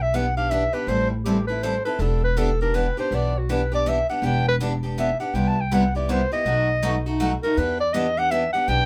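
A breathy clarinet and a pizzicato upright bass open together, joined at 0.1 s by a picked steel-string acoustic guitar, in this brief cut from a longer piece of acoustic string swing in the jazz manouche style. The tune sits in E minor at 162 BPM in a swung 3/4, and its mood is virtuosic yet bittersweet. The clarinet takes the solo throughout, its jazz-style tone warm and subtoned with a light vibrato, sitting present and up front. Beneath it the bass sounds woody and dark, while the guitar rings bright with fresh strings and an auditorium-like body, both also placed close to the listener. The harmony moves from Em7 to Am7 and back, then through Cmaj7 and B7 before settling again on Em7, all held in a small room with a moderate, short reverb.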